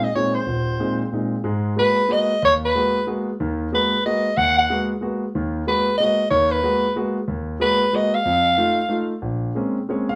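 A moderately reverberant live-band room sound frames this intense, hypnotic jazz waltz, cut from a longer piece, where a raspy, growling soprano saxophone with vibrato and scooped notes carries the swung melody up front until 9.1 seconds, over a concert grand piano of natural tone and deep bass that keeps accompanying until 10.2 seconds.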